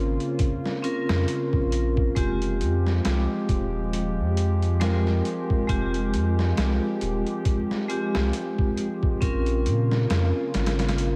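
A dark, ringing hard-mallet vibraphone with harmonic tremolo, 12-bit sampler grit and tape echo provides the accompaniment in this melancholic, cinematic trip hop excerpt in F minor at a slow 68 BPM with a lightly swung feel, over a round, deep dub sub bass, a warbling, detuned tape-like pad with chorus, and a muffled, pitched-down sampler drum kit with a thumpy kick that enters at 0.2 s, all set in a dreamy hall-reverb mix dusted with vinyl crackle as the chords move from Bbmadd9 to Fmadd9 and back.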